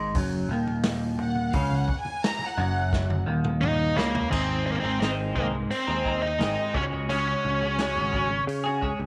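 Trippy and dark, this short psychedelic rock cut moves at 86 BPM in a straight 4/4 in Eb minor, wrapped in a moderate spring reverb. A bright, twangy twelve-string electric guitar carries the riff up front, its clean, compressed tone shimmering with harmonic tremolo and double-tracking, over a round picked bass thickened by transformer saturation and a vintage acoustic kit with dark cymbals, a medium-tuned snare and a tight kick. Very quiet, low-tuned congas with damped, thick skins murmur softly beneath, and from 1.2 to 3.2 seconds a lush, close string section holds sustained chords high above with bowed vibrato, featured as the standout voice of the opening. A drum fill closes that first part before the harmony shifts from Ebm to Ab at 4.3 seconds and then to Dbsus4. An octave-fuzz lead guitar, dark and distorted with slapback echo, carries the melody up front from 3.6 seconds into the second half.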